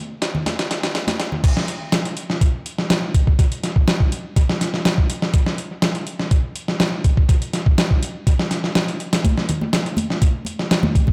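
A straight 4/4 breakbeat at 123 BPM drives this funky, gritty excerpt, built on a dusty soul sampler-style kit of kick, snare, hi-hat and crash: compressed and up front, with a thumpy kick and fat snare, high-pass filtered, re-recorded in a large room and trailed by analog delay. Close, dry acoustic congas played with hard hands enter at 0.3 s, stop as the drop hits at 1.4 s, and return at 9.2 s, with their own analog delay. Light reverb and digital ambience give the mix an echo-heavy character.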